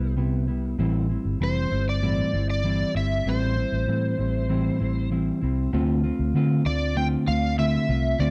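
A dark, hazy production with light reverb frames this dreamy fragment of indie bedroom pop, where a clean, mellow electric guitar with subtle chorus and warbly pitch drift moves from Cmaj7 to Am7 over a round, punchy muted fingered bass sitting up front, an overdriven slide guitar enters at 1.4 s with a high melody bathed in analog chorus and delay, and the harmony shifts to Dm7 as a new section begins at 5.7 s.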